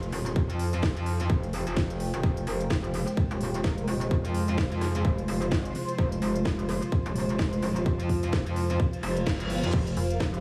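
Bass house at 128 BPM in F minor, this bouncy, swaggering excerpt rides a swung sixteenth-note groove in 4/4. A metallic, distorted wobble bass sits up front, aggressive and bright with chorus, tube saturation and sidechain pumping. A tight, layered electronic kick enters at 0.4 s alongside a garage kit of cracking snare, crisp hats, rim clicks and crash, both tape-tinged and re-recorded in a large room. Behind them, a sweeping resonant pad of detuned sawtooth chords evolves with a filter swell, while a granular cloud pad hovers higher with a blurred, cloudy texture in its own built-in reverb. A breathy, flute-like synth lead with vibrato drifts in very quietly from 2.5 s to 6.1 s and returns briefly near the end. An electronic reverse cymbal rises at 9.0 s before a short, mellow FM bass hit lands at 10.0 s, all within a light digital room ambience.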